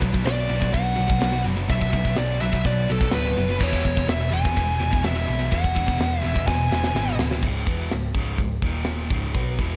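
A high-gain lead guitar carries the melody up front from 0.3 to 7.2 seconds in this relentless, dark heavy metal excerpt at 125 BPM. It rides over a tight acoustic drum kit in a big room, with bright cymbals and a high-tuned snare, and three picked rhythm guitars churn riffs in the background: one distorted, one heavy and distorted, and one sludgy, overdriven and double-tracked. A round, hollow-body short-scale bass anchors the low end as the harmony moves from Bm and E to C#m after a drum fill at 6.5 seconds, set in light reverb with a warm production.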